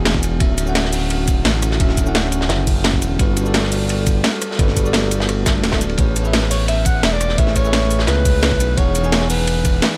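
A bright, punchy alto saxophone with vibrato enters at 6.5 seconds over an uplifting, lush liquid drum and bass groove at 172 BPM in A major, where a bell-like tine electric piano and a glassy, ethereal FM pad carry Dmaj9, Gmaj9, Amaj9 and Emaj9 chords above a smooth, up-front synth bass, while a knocking electronic kick, a drum and bass kit with cracking snare, rim click, shaker and metallic hats, and a gritty, saturated breakbeat kit with dark cymbals drive the beat in a small room, and a very quiet electronic swell sounds just before the sax arrives.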